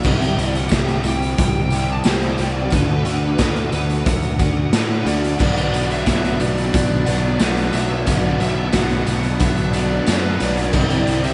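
A straight 4/4 groove from a raw garage drum kit, lo-fi and gritty with a boomy kick and muffled top, drives this blissful, dreamy shoegaze and dream pop excerpt, with a faint jingly tambourine and a punchy fuzz-picked electric bass underneath. An overdriven semi-hollow guitar plays a riff through ensemble chorus, while a fuzzy lead guitar carries the melody with distortion and tape echo over chords moving from C to D6 to Bm. At 5.4 seconds a biting overdriven guitar enters in the background with reverse reverb, and the whole mix is soaked in church-like reverb for a hazy, softened sound.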